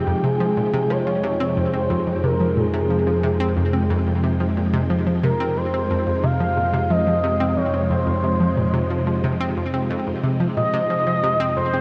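A straight 4/4 pulse at 90 BPM carries this cosmic, expansive excerpt of sequencer-driven ambient space music in F minor, where a round, detuned analog pluck riff with ring modulation and tape echo starts at 0.1 s beneath a smooth, nasal synth lead melody with vibrato, a swirling, vintage string machine holds phased Fm7 chords, and an evolving pulse-width analog drone enters on F2 at 1.3 s, all bathed in a huge, wet reverb.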